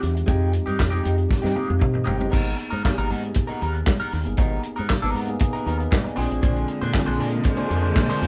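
A celebratory disco groove at 117 BPM opens with a mid-forward soul drum kit of tight kick, dark cymbals, hi-hat, snare, toms, handclaps and crash. Alongside it come a round, punchy fingered bass through an envelope filter, a slightly broken-up guitar with wah, and a mellow tine electric piano, all played together in one room with light reverb over chords moving from Fm9 through Abmadd9 to Bb9. A drum fill and electric piano fill arrive at 1.3 seconds, lush bowed strings with vibrato join at 6.4 seconds, and tight vintage horn stabs cut in at 7.4 seconds before this joyful fragment of a longer piece breaks off.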